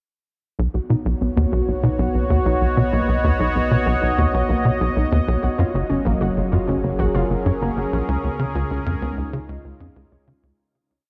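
Luminous and expansive, this short sequencer-driven ambient space-music piece in B lydian moves at 96 BPM in 4/4 through B, F#maj7 and C# chords, with a bright, resonant detuned sawtooth pad slowly swelling up front, a punchy, gritty sequencer bass driving a 6-step loop that drifts against the bar, a round sine sub bass sitting very quietly beneath, and a warbling, dusty lo-fi pluck tracing a 10-step arpeggio in the background, the whole set in a huge ambient reverb before fading out from 7.3 s.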